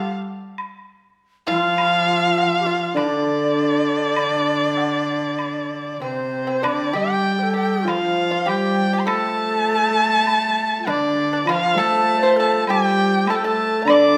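A dark, woody erhu sits up front with the melody, bowed with a soft attack, vibrato and portamento, in this tender, wistful Chinese traditional chamber piece in D yu mode, at 100 BPM in 4/4 with a rubato feel. Around it a breathy, bright bamboo xiao, a dry, percussive fingerpicked pipa and a distant, nasal, reedy cello with gut-string tone carry second lines, while a background woodblock enters at 0.6 seconds and a shimmering, ringing hammered dulcimer joins the accompaniment at 2.9 seconds. A wet recital hall reverb surrounds the ensemble, and the passage, cut from a longer work, moves into a new section at 6.6 seconds.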